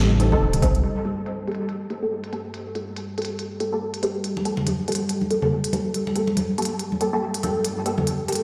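Heard through a bare stone room on a big sound system with a wet echo chamber, this heavy, meditative half-time deep dubstep fragment sets a moody, slow-blooming ambient pad beneath a muted, up-front dub chord stab with dub echo, smooth filtered electronic hi-hats, bright hard-hand congas, a punchy electronic kick heard only briefly at the start, and a rumbling, beating detuned saw bass that drops out at 0.8 seconds and returns at 7.6 seconds while a filter sweep plays over the drums.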